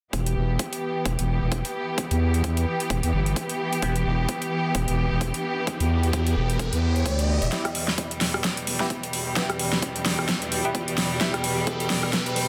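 A dense, heavily limited mix bathed in lush hall reverb carries this bouncy, aggressive bass house excerpt, where clear bowed strings hold sustained chords under sidechain pumping alongside a growling, thick FM bass that drops out at 7.5 seconds, big-room drums with a huge snare and metallic hats up front, a punchy, tape-toned electronic kick in the background, a nasal, band-passed sawtooth stab with phaser, chorus and delay that returns for a filter-swept build-up and drum fill, and a riser entering at 5.3 seconds.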